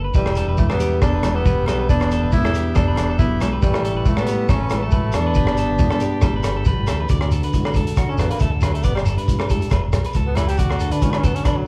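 Highlife guitar band music with a sunny, danceable feel, moving at 138 BPM in a straight 4/4 in D major, heard as a short cut from a longer piece. A crunchy breakbeat drum kit sits up front with a tight kick, hi-hat and rim click, its saturated, gritty sound rolled off at the top, while congas, a grainy shekere and very quiet, ringing agogo bells fill out the percussion. A round, punchy fingered electric bass anchors the low end, an electric guitar at the edge of break-up plays compressed, picked arpeggios, and a boxy fingerpicked plugged-in steel-string acoustic guitar adds faint accompaniment. A breathy tenor saxophone carries the melody with a soft attack and light vibrato, joined in the background by a subtoned alto saxophone line with scooped notes and by buzzy sustained chords from an overdriven combo organ, both of which stop around 7 seconds. After a drum fill at 6.8 seconds, the tenor saxophone takes an intimate, whispered solo over chords moving from D through Gadd9 and Emadd9 back to D. 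The whole band sounds as if playing live in one room, set in a moderate large studio reverb.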